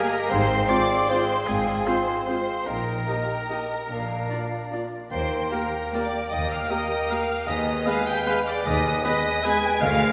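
A lush violin section carries the melody with smooth vibrato in this sweeping, elegant orchestral ballroom waltz, its rubato phrasing supported by a rich second violin line, clear oboe, pure silver flute, warm clarinet, a bassoon and distant viola accompaniment, mellow trumpet stabs, sustained French horn chords, and a cello and double bass foundation, all bathed in a hall's wet reverb.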